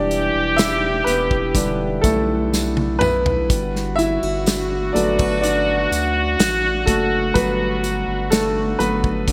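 Hopeful and tender, this slow 62 BPM pop ballad fragment in G major lets a warm, woody upright piano take the lead up front over a muted, nasal French horn section. Beneath them, a full-bodied fingerpicked acoustic guitar arpeggiates in the background with subtle chorus and delay, alongside a deep, saturated sine sub bass, a punchy small-room country drum kit that plays a fill from 2.5 to 3.5 seconds, and a very quiet jingly tambourine, all moving from Em7 to Gmaj7 in a bright 1980s-style digital production bathed in moderate plate reverb.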